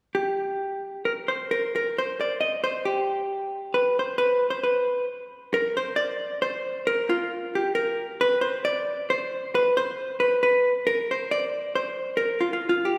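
A vintage hollow-body jazz guitar, electric, clean, picked and compressed, plays a solo line up front in a whirling, bittersweet musette at 135 BPM in 3/4, ranging from F4 to Eb5, with a wet concert hall reverb giving it a churchlike bloom, as this brief cut from a longer piece moves into a new section at 5.5 seconds and runs until 13.0 seconds.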